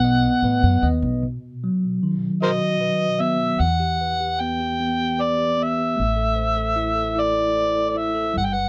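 Heartbroken and reflective, this short fragment of an acoustic folk-pop ballad moves at 76 BPM in a straight 3/4 lilt in E minor, drifting from B to Emadd9 and then Am. An overdriven, amplified harmonica carries the solo melody up front, its gritty pop-style tone marked by light vibrato and tongue slaps, while a bell-like, bright tine electric piano plays clean, direct accompaniment just as close. Beneath them a dark, woody upright bass with steel strings supplies thumpy pizzicato notes, and moderate studio reverb gives the sound a gentle sense of space.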